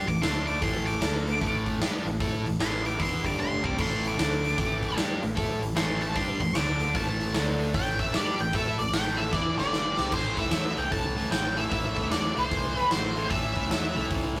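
An octave-fuzz lead guitar, dark and distorted, carries a picked solo melody through the opening 10.1 seconds of this heavy, smoky blues rock and southern rock passage, cut from a longer piece with a swung feel. Beneath it, a bright, double-tracked stack guitar drives an overdriven riff up front, a round, foam-muted vintage bass adds a dusky low end, and a big acoustic drum kit with a tight kick and medium-tuned snare plays fills at 3.4 and 9.3 seconds. The rough rehearsal-room recording has tube saturation and moderate studio reverb, and the chords move among power chords and A minor before a Csus2 leads into a new section.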